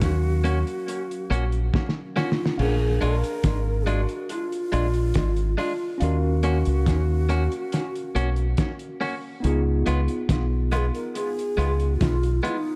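A breathy, chiffy clay ocarina sings a longing, bittersweet melody through tape echo over a tine electric piano with medium tremolo, a deep, punchy fingered dub bass up front and a muffled, cloth-damped drum kit with dub echo and a fill at 1.7 seconds, while compressed clean electric guitar stabs with dub echo join at 0.4 seconds in this slow 70 BPM lovers rock reggae excerpt in Eb minor, set in a dark production with light reverb.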